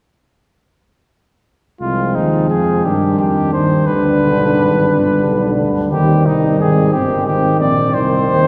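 A warm cornet with light vibrato carries the melody up front in this grave, heroic passage for brass quintet, a classical piece in C minor taken at a rubato 59 BPM in 6/8. From 1.8 to 8.5 s, a soft-attack flugelhorn sings a second line while a clear euphonium and a mellow, distant French horn sit behind as accompaniment, and a roomy tuba anchors the bass through a Cm, G, Cm progression. The whole quintet is heard from further back in a wet cathedral reverb with a long, lingering tail.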